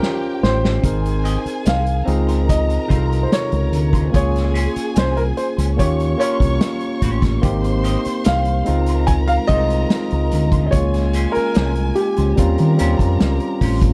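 A slow, straight 4/4 groove at 73 BPM opens with a drum fill from a vintage kit with a pumping small-room sound, punchy kick and rolled-off top, as this lush, romantic 1970s-style soul excerpt in Ab major cycles through Abmaj7, Dbmaj9, Bbm9 and Eb13 chords, with a natural-sounding grand piano carrying the melody, a bowed symphonic violin section adding a smooth, expressive second line, and a barky, lightly overdriven tine electric piano accompanying, while a dark, round fingered bass sits up front from 0.4 seconds and a twangy, lo-fi electric guitar with wah plays a riff in the background from 1.2 seconds, all in a dry mix.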